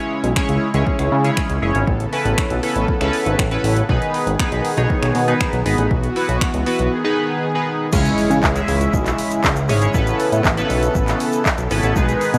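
A glossy, up-front dance-pop mix with light digital ambience opens this energetic, driving excerpt, where a retro chorused polysynth with a phaser carries the accompaniment over a soft, smooth supersaw holding sustained chords in the background, its pumping tied to the sidechain. A fat, nasal analog bass, also pumping, joins with a punchy deep house kit at 0.2 seconds, the kit bringing dark hats, finger snaps, handclaps and crash over its kick, all moving through a minor-key progression that passes through a suspended chord before returning home. At 7.9 seconds a new section begins with a very quiet electronic impact and a grainy, bright egg shaker tucked in behind.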